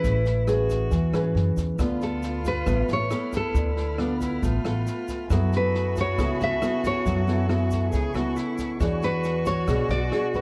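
Bossa nova at 137 BPM in a straight 4/4, sophisticated and relaxed, heard as a short cut from a longer piece. Two fingerpicked nylon-string guitars sit up front: one carries the melody with a warm, classical tone, while the other, brighter and touched by finger squeak, plays the accompaniment. A clear, intense solo cello bows a second line with vibrato, and a woody pizzicato upright bass anchors the low end. An airy, polished jazz kit with a boomy kick, rim click and snare keeps time alongside a grainy tube shaker tucked in the background. At 1.8 seconds a lush violin section enters with soft-attack sustained chords, and the harmony moves through Amaj9, Dm6, F#m11 and E13 in a moderate booth ambience, all colored by worn cassette tape with warbly pitch drift.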